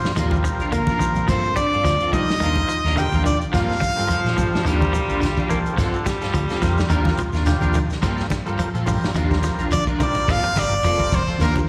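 Buzzy combo organ with slapback echo, bright clean guitar arpeggios and a grainy shekere open this defiant, driving afrobeat excerpt at 107 BPM in G minor, joined by a muffled, lo-fi vintage drum kit, hard-handed congas, twangy, slightly broken-up guitar stabs and a round, punchy hollow-body bass, while a brilliant, forceful trumpet carries the melody from 0.7 s over a dark hollow-body jazz guitar second line, a raspy baritone saxophone takes a second line at 4.1 s, and the trumpet returns at 9.7 s as Ebmaj9 and Gm11 alternate in the roomy sound of a live hall PA.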